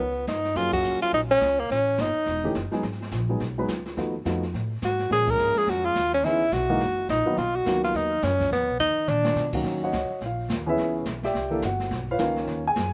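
Small-group swing-and-bop jazz with a moody, swinging feel, this short excerpt puts a warm, punchy tenor saxophone up front with slapback echo, playing forceful scooped melody lines from 0.0 to 2.6 and 4.8 to 9.5 seconds over a woody pizzicato upright bass, a dark, mellow baby grand piano comping with long sustain and its own slapback echo, and a distant, roomy brush kit with dark cymbals and a boomy kick that adds a fill at 8.8 seconds, all in a dry room through shifting extended chords.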